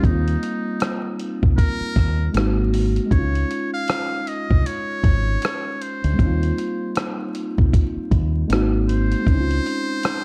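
A mellow, nostalgic lo-fi hip hop excerpt opens with everything sounding at once: a gritty, compressed sampler-style drum kit of thumpy kick, hi-hat and rim click, a round, punchy fingered electric bass, soft felt-like synth keys and a trumpet with a metal mute. The groove sits at 78 BPM in 4/4 with a lazy swing on the sixteenths, moving through Eb69, Ab7 and Db before returning to Eb69 and Ab7 and settling on Dbmaj7. The muted trumpet carries the jazz-style melody with a buzzy, thin, brilliant tone and scooped notes. Beneath it, the intimate synth keys are treated with chorus and a cassette-tape color, while the deep dub bass stays up front until it drops out at 9.6 seconds. The production is dark and warm, with little reverb and a bed of vinyl crackle, though the drums carry the character of having been re-recorded in a large room.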